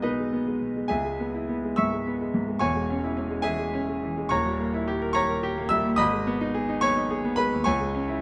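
In a rubato 6/8 at roughly 71 beats per minute, counted in dotted quarters, this passionate and agitated classical piano study in G# minor presses forward with a restless, virtuoso character. A single concert grand carries the whole 8.2-second fragment, cut from a longer piece, ranging from a deep-bass D#1 up to E6. The instrument sounds clear and up front, with a smooth, vintage tone and short sustain, tuned slightly low to A4 = 435 Hz. The harmony moves from G#m/B through C#m7 and C#m/E to a tense D#7b9 at 4.3 seconds, resolving to G#m at 6.0 seconds before turning to C#m. Close, detailed microphones and light reverb keep the playing intimate and vivid.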